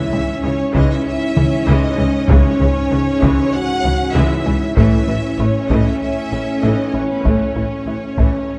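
Cinematic hybrid orchestral and electronic film score in C# minor at 97 BPM, futuristic and relentless, where a focused, lush violin melody and a distant second violin line ride over intense viola accompaniment, mellow French horn and trombone chords in the background, a bowed double bass and very quiet cello bass, a squelchy, nasal blip pluck playing very quiet arpeggios, and dry, hard-stick taiko drums entering at 0.7 seconds, all moving from C#m to A in a dark production with a wet scoring-stage reverb, cut from a longer piece.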